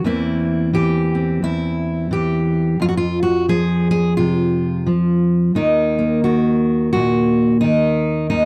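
Wistful and melancholic, this short folk excerpt features a solo fingerpicked steel-string acoustic guitar with a swung lilt in 4/4. The dreadnought sits up front with a full-bodied tone, moving through C7/E, F5 and Ebm across its span from Eb2 to Ab4. The sound is dry and close, in the manner of a 1970s studio, with a light touch of reverb.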